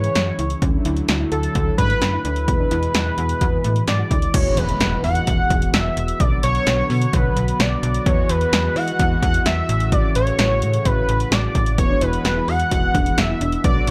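Cool and driving, this synth-pop excerpt is led by a bold, retro octave-doubled lead with vibrato, chorus and tape echo, set up front over a brassy, evolving analog pad and a snappy FM bass with a metallic, slap-like attack. A punchy, tape-warm analog drum machine with kick, snare, hi-hat and crash sits forward in a small room. A soft, dark pluck plays background arpeggios until 4.3 seconds and returns at 11.8 seconds, while a very quiet electronic impact arrives at 4.4 seconds.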